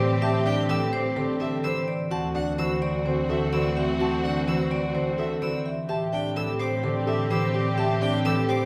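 A straight, even 4/4 pulse drives this short cut from a longer piece of minimalist pattern music in a classical vein, with a propulsive, bright mood. A vibraphone struck with medium hard mallets carries the melody in a metallic, ringing voice with fast motor vibrato, while a mellow, soft-attacked clarinet sits in the background on a second line. A fingerpicked concert harp supplies acoustic accompaniment, and a warm, intimate grand piano with audible action noise and deep bass spins arpeggios. A clear, focused solo violin joins at 0.2 s with its own distant bowed arpeggios high above. Underneath, a rich studio string section holds smooth, even bowed chords, and a lush double bass section anchors the low end with a tone full of vibrato. The harmony moves from Am7 to D7 at 2.1 s and back to Am7 at 5.9 s, and the ensemble sits in a wet scoring-stage reverb.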